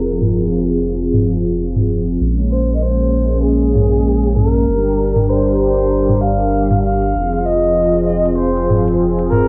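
Organic downtempo at 97 BPM in F minor with a meditative, warm mood, this excerpt sets a distant, bowed kamancheh melody full of vibrato and portamento over a detuned sawtooth analog pad with chorus and tremolo, a round, deep analog bass and a filtered afro-pop kit of cabasa, metallic hi-hats and toms, all under a filter sweep on the drums and pad, while a very quiet downlifter runs from the start to 2.2 s and the chords move from Fm through Bbm9 and Gm7 to Fm7 in a home-recorded cassette sound.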